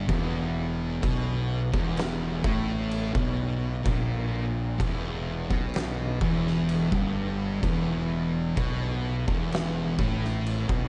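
Brooding and hypnotic, this short stoner and doom metal excerpt crawls at 64 BPM on an E minor chord, with two thick, dark fuzz guitars picking a low riff over a growly, overdriven fingered bass and an oversized low-tuned drum kit whose fat snare, punchy kick and crash cymbal sit up front in a bright stone room, all wrapped in a dark, warm production with light reverb.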